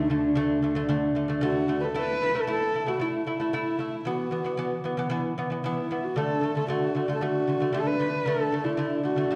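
In a reverberant recital-hall sound with a dark production, this excerpt of Mongolian folk music in D gong mode moves at 114 BPM with a vast, proud mood, as a husky, woody horsehead fiddle carries the bowed melody up front with vibrato and portamento over a delicate, fingerpicked lute playing arpeggios on double gut strings, while a rich, earthy cello holds a distant drone on D2 only until 2.0 seconds.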